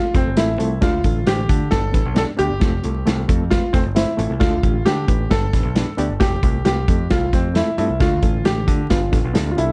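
A straight, danceable 4/4 groove at 134 BPM drives this short excerpt of uptempo 1960s-style soul, with a punchy, up-front acoustic drum kit of hi-hat, kick and snare and a direct picked electric bass from 0.1 seconds supporting a clear, present concert grand piano melody and a reedy, slightly out-of-tune electric piano with fast tremolo cycling through F, Dm and G, all in a dark, warm production with light reverb and vinyl crackle.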